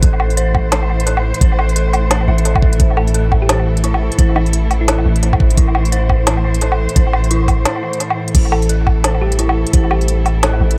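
Opening at once on a bowed, vibrato-laden studio cello section holding sustained chords through vintage 12-bit sampler grit and sidechain pumping, an eerie, inharmonic FM synth bell arpeggiating under chorus, phaser and analog delay, a deep, sine-toned 808-style bass sustaining up front on A1, a knocking electronic kick and an overdriven organic electronic kit of woody snare, smooth hats, crash and woodblock with analog delay, this tense, dark half-time drum and bass cut in A minor at 173 BPM with 60% swing on the 16ths brings in a round, tine-like thumb-piano-style synth pluck melody in the background at 3.0 s and again at 8.5 s after a brief break, all within an echo-heavy mix with light reverb, before the kick drops out at 9.8 s.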